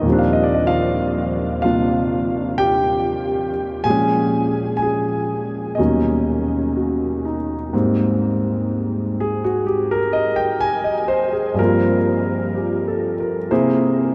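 An intimate, up-front concert grand piano with audible action noise and deep bass carries this playful, sophisticated solo jazz fragment at a slow 62 BPM in 4/4 with a swung, rubato feel, moving through rich chords such as Ebmaj13, Bbm7 and Eb7alt in Eb major before shifting to Ab major at 7.7 s for Abmaj9, Gm7 and C7b13, its tone bathed in a huge, wet reverb that evokes a vast, echoing space.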